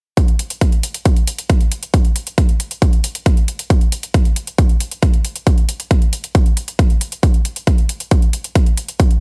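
A dry excerpt from an uplifting trance piece at 136 BPM in a straight 4/4, carrying a bittersweet, emotional mood. A punchy, layered electronic kick drum sits up front with overdrive and a touch of studio reverb, running from 0.2 to 9.1 seconds. Beside it, a quieter electronic hi-hat adds metallic, gritty shimmer with the same treatment until 9.2 seconds.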